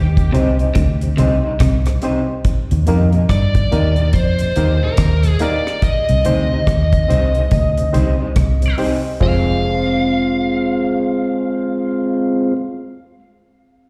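Roots reggae at 71 BPM in F dorian with a serious, laid-back swing: this live cut from a longer piece sets a biting, overdriven lead guitar melody soaked in tape echo and plate reverb over a round, foam-muted fingered bass up front, a dry drum kit with a tight kick, hi-hat and rim click that stops at 9.4 seconds, a mellow tonewheel organ with key click and slow rotary speaker, a reedy, barky electric piano stabbing through its built-in speakers, a chorused, compressed picked guitar accompaniment in the background, and a brief dark fingered guitar riff that ends at 1.9 seconds, all heard through the venue's PA in recital hall reverb as the chords move from Cm and Eb to Fm.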